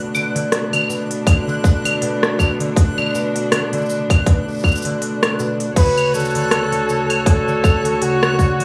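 Warm and playful, this short folktronica excerpt moves at 80 BPM in 4/4 with a light swing, as a woody, bowed string quartet holds sustained chords moving from Bm7 to Dmaj7 while a mellow concert harp rings out arpeggios through tape echo and a reversed, granular texture glimmers high in the background. An overdriven organic electronic kit of cabasa, claves, crash, crisp hi-hat and rim click sits up front, joined at 1.3 seconds by a tight, overdriven electronic kick. At 5.8 seconds a breathy, whispered flugelhorn with gentle vibrato takes the melody in an intimate jazz style, all framed by light reverb, small-room ambience and vinyl crackle.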